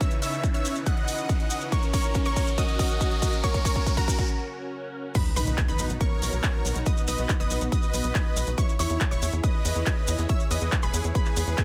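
A huge, thick supersaw carries the melody in this soaring, uplifting trance excerpt at 140 BPM in B major, its detuned, compressed sawtooth tone pumping with sidechain compression and trailed by digital delay. Above it, a bright unison pluck with a ring-modulated edge and filter sweep adds a second line in the background, while a lush pad with slow attack and long release holds sustained chords through chorus and phaser. The opening build-up moves from C#m7 to F# under a drum fill and an electronic riser, with a punchy analog drum machine supplying crash, handclaps and hi-hat and grainy, close maracas sitting quietly beneath. After a short break at 4.3 seconds, the drop lands at 5.2 seconds with an impact, shifting the harmony to B and then E6. A tight, nasal sequencer bass enters at 5.4 seconds, up front beside the layered, punchy electronic kick, all set in light reverb and digital ambience.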